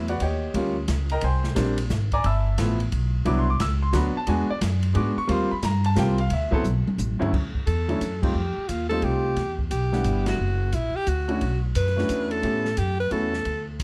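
A swinging 3/4 pulse at 177 BPM drives this short, relaxed small-group jazz excerpt, cut from a longer piece in a swing and bop vein. Upright bass, played pizzicato with a woody, up-front tone, and a polished grand piano comping near the front carry the harmony from the start through a chain of rich chords such as Eb7, Abmaj9#11 and G13 before settling into D major at 7.3 seconds. An airy drum kit in a small room adds dark cymbals, a medium-tuned snare and a boomy kick, and a drum fill from 6.6 seconds ushers in the second section. At 7.7 seconds a bright, close-miked alto saxophone takes the solo melody with vibrato, sitting up front over band accents and changes like F9, Em9 and F#7b13. Light reverb and a dark, warm production give the whole a warm, relaxed glow.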